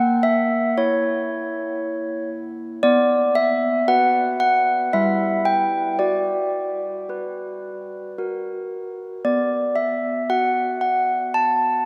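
A wet cathedral reverb, lingering for 4.8 seconds, surrounds this solemn, wintry classical tune for handbells, cut from a longer piece. The handbells play alone from 0.0 to 11.9 seconds, sitting up front with a clear, ringing, bell-like tone from medium clappers and spanning G3 to A5. At a slow 57 BPM in 3/4 with a straight feel, the music sits in B minor, tuned to A4 = 442 Hz. The harmony opens on A#dim before settling onto B5 at 2.8 seconds, then moves through Em/G, Bm/F# and F# before returning to B5 at 9.2 seconds. The long cathedral tail gives each chord a wintry stillness.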